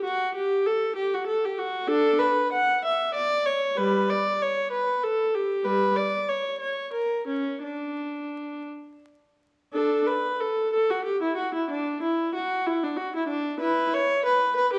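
Serene and radiant, this short cut from a longer baroque-style suite movement for unaccompanied viola finds a single bowed player, up front and smooth with vibrato, moving freely in 6/8 across a range from G3 to F#5, set in a moderate recital hall reverb with a dark, warm production and a layer of vinyl crackle.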